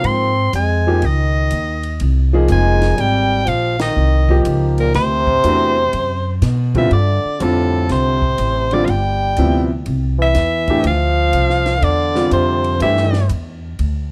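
A swung 4/4 groove drives this searching, spiritual modal jazz excerpt, where an edgy, forceful soprano saxophone leads with vibrato over a clear trombone's punchy second line, a natural-toned grand piano comps through lush extended chords, a woody pizzicato upright bass sits up front, and a compact cocktail drum kit adds a high-tuned snare and punchy kick, the whole band hitting an accent at 3.7 seconds before the harmony shifts to a suspended chord at 6.9 seconds, all set in light reverb with a dark, warm production.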